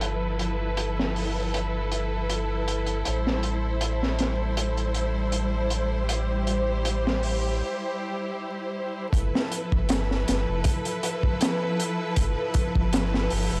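A crunchy, saturated breakbeat kit with a punchy kick and high-tuned snare, its top rolled off by low-pass filtering, drives this dark, cinematic trip hop excerpt at 79 BPM with a light swing, over a deep, round dub sub bass and lush, bowed symphonic strings holding filtered vibrato chords from G13 to Am7, all dry and gritty with vinyl crackle, with a break at 7.6 seconds before the G13 returns at 9.1 seconds.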